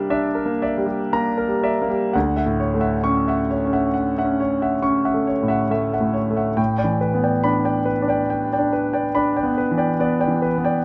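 A clear, polished concert grand piano plays alone in this hazy, serene fragment of impressionist classical music in a rubato 5/4, its deep bass and long sustain drifting from a C9 chord into Dmaj9 at 2.1 seconds and then A9sus4 at 6.6 seconds, captured up close in fine detail with light reverb.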